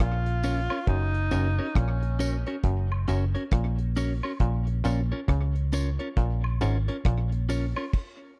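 Roots reggae in Bb minor at a laid-back 68 BPM, this short, serious fragment of a longer piece moves from Bbm to Gb and back, with a swung sixteenth-note lilt. A deep, dry reggae drum kit with a tight kick sits up front alongside a round, punchy, foam-muted fingered bass, its dark, amped tone anchoring the low end. A muted clav riff adds a percussive, stringy edge through a combo amp, while a clean, picked electric guitar enters at 0.4 seconds, compressed and bathed in spring reverb and dub echo. A breathy tenor saxophone opens the passage with a brief, whispered phrase that ends at 2.6 seconds, its scooped notes, vibrato and soft attack given a trail of dub echo. Tambourine, woodblock, maracas and group handclaps sit low in the mix, carrying a live-room air against an otherwise close, 1970s-style studio sound, and the band drops into a stop at 7.9 seconds.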